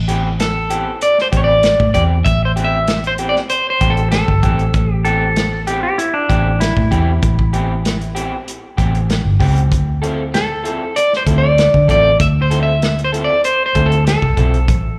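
A slightly broken-up electric guitar carries the melody in this brooding, soulful stretch of straight-eighth soul blues, its twangy, fingered tone dressed in lush chorus and slapback echo. It steps aside midway and returns to close the passage. In the gap, a bright, clean lap steel guitar plays a second line with slide, also touched by slapback echo, from 5.0 to 8.4 seconds. Underneath, a foam-muted vintage electric bass sits dark, round and punchy up front, while a warm soul drum kit keeps hi-hat, kick and snare going with a tight kick, medium-tuned snare and rolled-off top, sounding roomy and distant. An electric guitar through a small old amp adds lo-fi, picked stabs further back, with slapback and tape echo. The harmony shifts from Am9 to Dm9 at 9.7 seconds, and the passage, cut from a longer piece, is heard as a live gig through the venue's PA, with club reverb and small room ambience.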